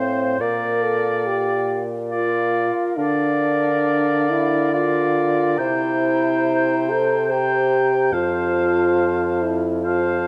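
A gently rubato 3/4 at 70 BPM carries this serene, tender slow movement for wind quintet, a short passage cut from a longer classical romantic piece that moves from Bb through Bb/D and C7 to settle on F. A hollow, pure silver flute with vibrato and a crisp attack sings the melody from a distance, while an oboe with light vibrato traces a second line and a clear, smooth-topped clarinet sits in the background. A warm, roomy French horn stands out as the most prominent accompanying voice, and a mellow, close-miked bassoon holds the bass up front, all caught by detailed microphones with light reverb.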